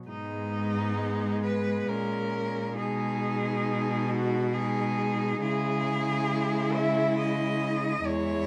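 A serene, lyrical classical passage for cello ensemble opens at 0.1 seconds, with four bowed cellos sounding together from the start, cut from a longer piece. It moves at 68 BPM in a rubato 3/4 in G# minor, tuned slightly low to A4 = 439 Hz, with the harmony passing from G#m to G#m/B and then to C#m at 5.4 seconds. The melody cello sings up front from D#4 to E5 with a smooth, even vibrato tone that nonetheless carries a distant quality, while a second cello traces a focused line between B3 and E4. A third cello plays G#3 as accompaniment, and the bass cello, close and up front, moves between E2 and C#3 with a rich, focused sound. Recorded with close, detailed microphones and little reverb, the passage ends at 8.5 seconds.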